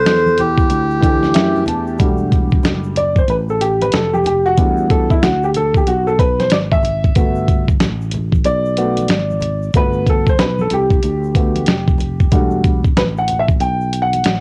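A swung 4/4 groove at 93 BPM, with a 63% swing on the sixteenths, carries this cool, smooth jazz-hop cut from a longer hip hop piece. A gritty, compressed sampler-style drum kit sits up front with a thumpy kick, a medium-tuned snare and hi-hat, joined by very quiet, bright tube shaker and congas, while a dark, round fretless electric bass holds the low end throughout. Over the opening chords, a reedy, breathy melodica with analog delay carries the melody as a mellow vibraphone, played with soft mallets and the motor off, rings beneath it as a second line, both stopping at 1.6 seconds. A woody, vintage upright piano enters with a fill at 1.0 second and takes a solo from 2.0 seconds to the end, moving through Em11, Gmaj9 and back to Em11. The melodica, vibraphone, piano and drums carry a cassette-tape color, and the whole cut has the feel of a home recording on cassette.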